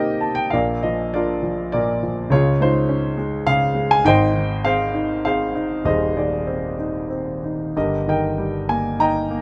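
A concert grand piano carries this brief classical piece alone, its smooth, vintage tone resting on a deep bass and notes with short sustain that sit up front in the sound. The mood is cool and bittersweet, and the playing is lyrical, moving in a flexible rubato over a triple metre. A short piano fill opens the passage before the main section begins at 0.5 seconds, and the harmony drifts from C minor seventh through B-flat, D-flat with an added ninth and A-flat before settling on E-flat over G near 7.8 seconds. The piano spans from the low bass register up into the upper middle of the keyboard. Close, detailed microphones and a nearly dry room capture every nuance of this fragment, which is cut from a longer piece.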